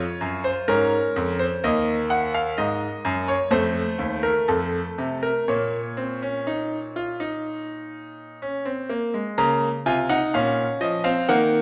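A bright concert grand piano, brilliant and up front with deep bass, plays alone through this contemplative, solemn baroque-style three-part fugue in Bb minor, moving at a slow 63 BPM in straight 4/4. Its natural tone spans Eb2 to Bb5 and sits in a reverberant recital hall with a 1.7-second decay. The harmony passes from Db through Ebm and F7 to settle on Bbm, and a new section begins at 9.4 seconds in this fragment of a longer piece.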